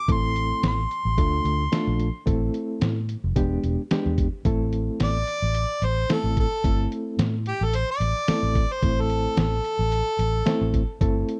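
Straight-eighth soul blues in A minor at 110 BPM, soulful and brooding, where an overdriven harmonica with a smooth top carries the melody and takes a solo from 4.5 s, over a reedy, barky electric piano with fast tremolo, a dark, round, foam-muted electric bass and a muffled, compressed, pitched-down sampler-style drum kit with a thumpy kick, captured in a dry, close 1970s-style studio sound and cut from a longer piece.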